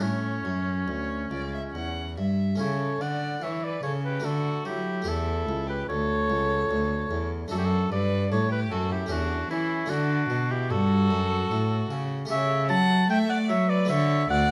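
A warm, up-front oboe with light vibrato carries the second line beside a smooth, distant bowed violin melody, a focused, close cello bass and a bright, airy harpsichord, in this serene, flowing baroque-style sonata movement at 74 BPM in 3/4 with rubato, heard in a moderate recital hall through close, detailed microphones, cut from a longer piece whose chords shift from A toward D at 4.2 seconds.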